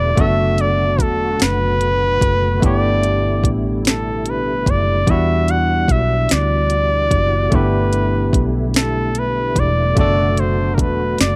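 A clear, up-front flugelhorn sings the melody with vibrato and tape echo from the first moment of this slow, sultry six-eight R&B excerpt. Beneath it sit a bright, barky tine electric piano, a tonewheel organ holding chords in the background through chorus vibrato and a slow rotary speaker, and a dark, round, foam-muted fingered electric bass. At 0.2 s a smooth, produced electronic drum kit arrives up front with a soft kick, sharp snare and hi-hat, moving at 49 BPM in dotted quarters through a late-night progression of Bm7, G69, Em9, G69 and Bm7, in light reverb and tuned to A4 = 438 Hz.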